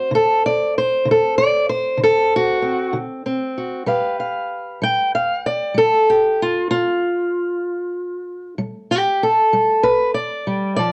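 Worn, warbling old cassette tape gives this recording a warbly drift in pitch, and a modest small-room reverb surrounds the playing. It is a short cut from a longer acoustic country blues piece with a rollicking yet laid-back mood, moving at 64 beats per minute in a straight 12/8. A fingerpicked steel-string acoustic guitar carries the whole passage solo, sitting up front with a dark, boxy parlour character. Its range stretches from D3 up to G5. The harmony rests on D7 before shifting to G7 at 3.9 seconds, and the guitar plays on until the cut ends at 10.9 seconds.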